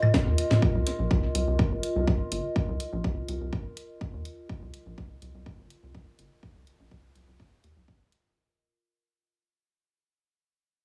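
A brief burst of analog electronic toms and claves with tape echo opens this cool, quirky minimal techno excerpt in C minor at 124 BPM alongside a warbling, nostalgic lo-fi pad with chorus and sidechain pumping, before a punchy up-front kick, a house kit of hi-hat and cracking snare with tape echo, and a rubbery, hollow square bass with a resonant filter pluck and its own pumping settle into a straight 4/4 groove in a small, echo-heavy room as the whole 8.4 seconds fade out.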